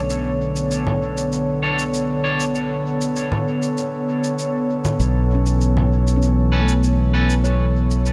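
Set in a light digital ambience, this meditative, spacious ambient dub excerpt rests on an airy, detuned pad with chorus holding sustained chords up front over a bright, direct fingered electric bass. Produced shaker and congas carry dub echo, and a very quiet, ringing handpan plays arpeggios briefly at the start before returning at 5.3 s, while a twangy, slightly broken-up electric guitar drops filtered, echoing stabs at 1.6 s and 6.5 s as the harmony moves from Bm9 to Aadd9/B.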